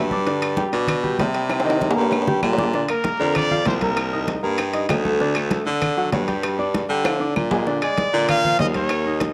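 A bright grand piano with audible action noise and a bright baritone saxophone with vibrato holding down the bass open this fiery, danceable salsa fragment at 195 BPM, soon joined by thin-skinned, damped congas, round, soft-handed bongos, ringing metal-shell timbales and woody claves in the background, while a punchy, close-miked trumpet, after a momentary touch at the very start, sings up-front melody phrases from 2.9 and 7.8 seconds, the piano and trumpet carrying a cassette tape colour within moderate spring reverb and a small home-recorded room.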